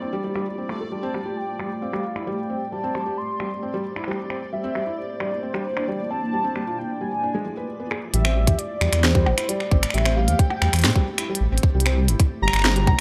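Cerebral and eerie, this 133 BPM IDM excerpt in A minor opens with a blurred, evolving granular cloud pad under a filter sweep, felt-muted upright piano arpeggios with audible action noise and tape echo, and a bubbling, resonant stepped-filter texture, as a glitchy kit of clicky hats, tiny snare, finger snaps and percussion blips arrives at 0.4 seconds and a velvety synth lead with vibrato and dub echo takes the melody from 0.9 seconds, before a dark, rumbling detuned saw bass and a tight, up-front electronic kick join at 8.1 and 8.5 seconds over chords moving from F69 through Am7, C9 and E7b9.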